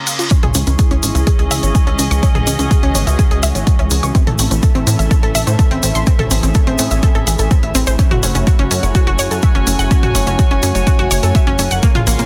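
Cinematic and melancholic, this melodic techno excerpt moves at 125 BPM in a straight 4/4, cut from a longer piece. A tape-warm deep house kit of hi-hats and toms and a grainy acoustic egg shaker slip in during a brief opening break. Once it ends, a punchy, overdriven electronic kick sits up front beside a funky sawtooth-and-square bass with a filter pluck and fast attack, and together they fill out the groove. A round, detuned analog pluck spins bright arpeggios through chorus and dub echo, with a filter sweep running over it throughout. Underneath, a thick, airy unison pad carries chords from C#m at 0.3 seconds to Am at 4.1 seconds and F#m7 at 8.0 seconds, coloured by chorus and phaser and kept in the background. A distant, floating string section played sul tasto and a tense, very quiet bowed-like drone with vibrato add depth. Sidechain pumping breathes through the pluck, pad, strings, bass, hats and toms, all set in light reverb under a dense, heavily limited modern master.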